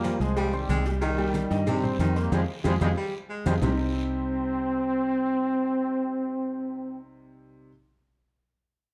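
A dark, moderately reverberant large-studio sound with a faint mains hum frames this fiery, driving salsa fragment, cut from a longer piece. A bright, tight trombone section carries the melody up front with light vibrato and a smooth top, while a punchy, distant baritone saxophone with its own vibrato adds a second line. Underneath, a round, foam-muted fingered electric bass sits forward in the mix, and a clear, woody upright piano fills out the accompaniment over the chord changes. The percussion blends thick-skinned, low-tuned congas in the background, tight high-tuned cowbell and bongos, ringing metal-shell agogo bells and timbales, a raspy guiro and grainy maracas, several of them compressed and saturated and all sitting low in the mix. A band accent punctuates the groove before the saxophone and percussion drop out at 3.7 seconds, leaving the trombones until 7.0 seconds and the piano and bass running to 7.7 seconds.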